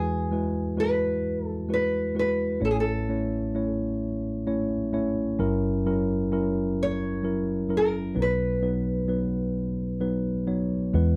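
Acoustic folk-pop ballad in 6/8, moving at a slow 43 BPM counted in dotted quarters, with an intimate, heartfelt mood and a straight feel. A small, fingerpicked nylon-string guitar on fresh strings carries the melody up front, its lines touched by a slapback echo until 10.5 seconds. Beneath it, a worn, slightly out-of-tune tine electric piano supplies clean, direct accompaniment across a broad register, sitting close in the mix. The harmony moves from Eadd9 through A and F#7 to B, and at 10.9 seconds a dark, round fretless electric bass with a woody, hollow-body tone arrives briefly on a low E. The sound is that of a dry, close 1970s-style studio with light reverb, and the passage is cut from a longer piece.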